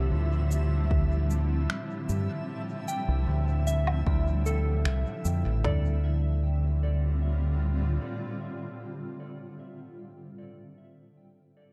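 A hazy, meditative ambient dub fragment in D minor at 76 BPM opens on a Dm11 chord with a blurred granular cloud pad, a soft FM synth bell arpeggio carrying chorus, vintage 12-bit sampler grit and tape echo, a round, up-front fingered electric bass and a reversed, swelling texture, joined at 0.5 s by overdriven electronic cabasa, finger snaps and woodblock with dub echo and at 0.9 s by an overdriven electronic drum kit with deep kick, woody snare and toms, all set in a dark, dry production.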